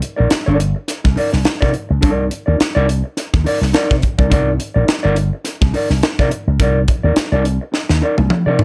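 A growly, punchy slap bass run through an envelope filter anchors this short funk excerpt in C minor, entering at 0.2 seconds and sitting up front with a bright, amped edge over a sustained Cm9 at 105 BPM with a lightly swung sixteenth feel. A crisp fusion drum kit with a high-tuned snare, punchy kick, hi-hat and toms plays in an airy, polished studio room and closes with a fill from 7.7 seconds, while a mellow, dark, clean electric guitar plays fingered accompaniment in its middle register. Light reverb frames the hypnotic, sly groove, which is cut from a longer piece.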